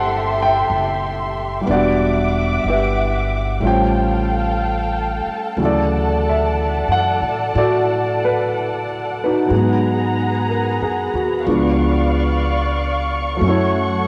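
Piano, muted strings and upright bass open together on a melancholic, intimate jazz ballad at 61 BPM in 4/4, swung on the eighths, cut from a longer piece. The up-front grand piano, with its action noise audible, accompanies over sustained chords from the veiled, con sordino string section, bowed with vibrato and a soft attack, while the woody pizzicato bass holds the low end, the chords moving from C6 through Dmaj7 to G#m9 and settling on F#m7 at 13.4 seconds. A lush hall reverb surrounds the home cassette recording, lending tape colour to the piano and strings.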